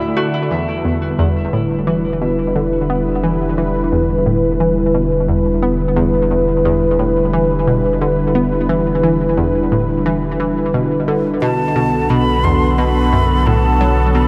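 A brief bubbling filter texture, a fingerpicked Celtic harp with tape echo and a warbling, detuned resonant pad open this hypnotic, cosmic stretch of sequencer-driven space music, while a bright, round analog pluck riff with chorus and cassette-tape colouring runs underneath. A deep sine sub bass settles in at 0.5 seconds, and the harp drops out at 3 seconds, the whole scene set in a vast, echoing cathedral reverb. At 11.4 seconds a breathy, hollow concert flute, close-miked with vibrato and tape echo, takes up the melody.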